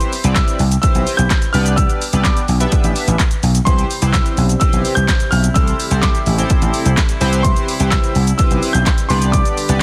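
A clear, polished baby grand piano melody with delay, a glossy, detuned chorused polysynth with sidechain pumping, and a dry, punchy analog drum machine of kick, snare, handclaps, hi-hat and shaker open this carefree, upbeat dance-pop excerpt in C major at 127 BPM. An amped, up-front vintage slap bass joins at 0.2 seconds, and a dark, distant brass ensemble enters at 3.7 seconds, holding sustained chords in the background over Cmaj7, G and Am7, within a dense, heavily limited modern master with digital ambience.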